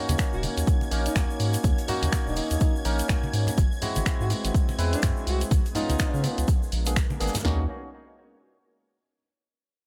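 A clear, close-miked alto saxophone plays a classical-style solo with a soft attack and digital delay over a moody deep house groove, driven up front by an overdriven house kit with a deep kick and punchy snare, with a round, dark analog bass and barky tine electric piano stabs pumping under sidechain, while a punchy analog drum machine adds snaps and hi-hat, hard-hand congas, a grainy egg shaker and an airy, polished studio kit sit in the background, and a very quiet silky string machine holds sustained chords while a nasal, evolving analog string pad with chorus and vibrato adds a high sustained texture over a progression that moves from Ebm7 through Ab7alt, Db9 and Bb7b9.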